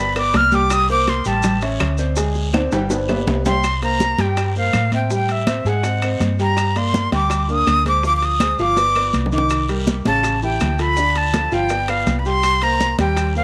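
A breathy, bright flute with expressive vibrato leads this sophisticated, fiery Afro-Cuban jazz passage in C minor at 164 BPM, up front beside a dark, round hollow-body electric bass, while an intimate baby grand piano with audible action noise comps underneath and a background bed of high-tuned damped congas, low-tuned bongos, ringing timbales, raspy guiro, grainy maracas and very quiet woody claves drives the groove, with drum fills at 2.5 and 8.8 seconds, all in a small room with light reverb.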